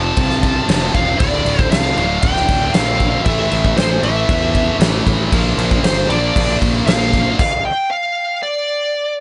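A brief cut from a longer hard rock piece opens with a smooth, overdriven lead guitar carrying the melody over a heavy, double-tracked high-gain guitar riff and a growly fuzz bass, with a gated 80s drum kit joining at 0.2 seconds. The mood is menacing and weighty, the straight 4/4 groove moving through F, Dm, A5 and Bb. The drums sound polished and airy in a big gated room, with a fat snare, punchy kick and bright crash cymbals sitting up front. The lead guitar also sits forward, its bright picked tone trailed by digital delay, while the distorted riff guitar stays low and heavy and the overdriven bass adds a warm, growly bottom. At 7.4 seconds the band stops and the lead guitar rings on alone until 9.2 seconds, all within a studio reverb and a dark, rolled-off top end.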